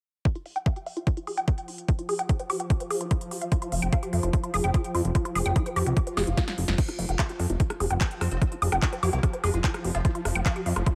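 Psychedelic trance at 147 BPM in an intense, psychedelic mood, this excerpt drives a punchy, up-front electronic kick and a filtered techno kit of snare, smooth hats, claps, rim clicks and crash under a woody, warbling wave-folded pluck riff with chorus and delay. A swarming detuned drone pumps beneath, and a fat, tube-saturated analog bass enters at 3.7 s. A background swell and drum fill lead into the second section at 6.8 s, where a metallic, wobbling FM second line and a barely audible granular cloud pad join.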